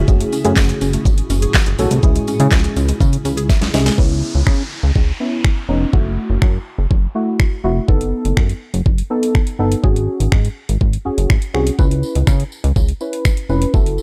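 A dry, gritty hardware sound with transformer saturation and a digital ambience gives this driving, confident dance-pop cut, taken from a longer piece, its edge at 123 BPM in a straight 4/4 and C# minor. An electronic R&B drum kit sits up front with a knocking kick, deep snare, metallic hats, finger snaps, handclaps and shaker, while a retro, glossy chorused synth bass and a dark, detuned chord stab with ring modulation and a moving notch pump along with it. In the opening bars a cloudy, granular pad with built-in reverb and a woody, round FM mallet pluck playing arpeggios through chorus and tape echo hover in the background, and a jingly tambourine adds shimmer. A drum fill at 3.5 seconds closes that first part, and at 4.0 seconds the pad and pluck drop away as an electronic downlifter sweeps in over a C#m7, F#m7, B7/F#, G#7sus4 progression. The tambourine returns at 11.8 seconds as the harmony comes back to C#m7.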